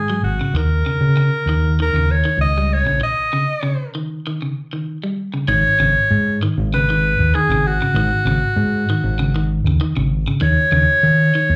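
An edgy, forceful alto saxophone takes the solo melody from the first beat alongside a bright, twangy, slightly broken-up electric guitar picking arpeggios and a dark, round, punchy fingered electric bass up front, all moving between G#7(no3) and D#7(no3) in a driving, intense afrobeat cut from a longer piece at 97 BPM in G# minor, with slapback echo on the saxophone and guitar, a break from 3.0 to 5.5 seconds, and the light club reverb of a live gig heard through the venue's PA.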